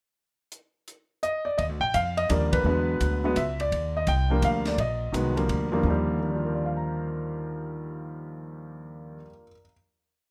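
Sophisticated and warm, this short, complete jazz piano trio piece swings in three, opening with a compact cocktail drum kit at 0.5 seconds whose dark, smooth sound features a high-tuned snare, tight kick, hi-hat and a stick-played ride cymbal pattern. A concert grand piano with deep bass and audible action noise carries motif-based song phrases and syncopated comping in rootless voicings, while a woody, thumpy pizzicato upright bass walks in at 1.6 seconds, and the band hits an accent together at 2.5 seconds before settling on a final chord. The lightly reverberant mix has the rough feel of a home demo, with the intimate piano and the bass up front.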